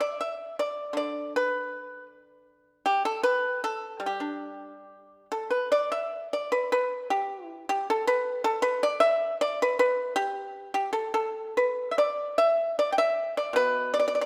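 A moderate concert hall reverb surrounds this short fragment of Chinese traditional music, lending the dry, up-front attack of a solo pipa a gentle sense of space. The pipa carries the whole piece alone, its fingerpicked notes sounding warm yet percussive as they move between B2 and G5. The mood is flowing and serene, with a loose rubato feel that breathes freely over an underlying 2/4 metre. An opening passage runs to 5.7 seconds, and a contrasting section then carries the music through to its cut-off at 14.3 seconds.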